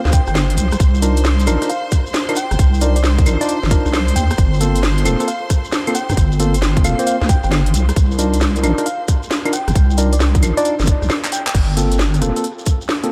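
A clear, focused violin section holds sustained chords with vibrato and a pumping sidechain feel, while a bell-like FM electric piano sparkles with a chorused melody in the background, opening a moody, bouncy two-step UK garage cut from a longer piece. A deep, dark wobble bass sits up front beside a tight, tape-warm electronic kick and a layered garage kit of cracking snare, crisp hats, claves, rim clicks, handclaps and crash, with a grainy shekere far back and clean tine electric piano stabs arriving at 1.0 seconds through dub echo. After a short break and drum fill near 11.2 seconds, the tine electric piano carries a filter sweep from 11.5 seconds to the close in a light, echo-heavy mix.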